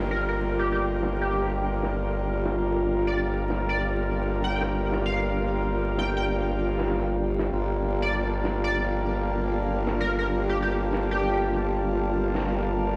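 A wobbling, compressed formant-sweep wobble bass sits up front on G1 in this swaggering, playful glitch hop excerpt at 97 BPM in G minor, held on a Gm7 chord with a 16th-note swing, joined by dark jazz-style horn stabs with 12-bit sampler grit and delay, an edgy, tearing sync lead from 0.1 seconds, a cloudy granular pad, a smooth analog pad entering at 1.5 seconds, a high-tuned, airy snare drum in the background, and a very quiet downlifter, all set in a lush hall reverb with vinyl crackle.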